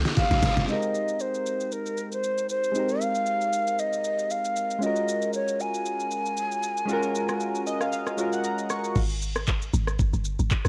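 A lightly reverberant home cassette recording carries this relaxed amapiano excerpt in Ab major at 116 BPM with a swung sixteenth feel, where a breathy, hollow jazz flute with vibrato and tape echo carries the melody over round analog keys with chorus and a filter sweep, a smooth electronic R&B kit of knocking kick, deep snare, metallic hats, handclaps, rim click, shaker and crash, and a dark, percussive log drum bass that sounds in the opening drum fill and returns for the drop at 9.0 seconds.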